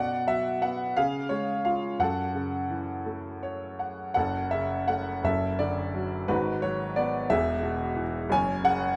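Classical solo piano in F# minor, this melancholic, wistful fragment from a longer piece moves in a slow, rubato 6/8 at roughly 55-60 dotted-quarter beats per minute. A grand piano plays alone throughout, ranging from deep bass to the upper middle register, with an intimate, slightly boxy tone placed up front and audible action noise. A short fill from 3.1 to 4.2 seconds leads into a restatement of the opening idea, and moderate recital-hall reverb surrounds the instrument.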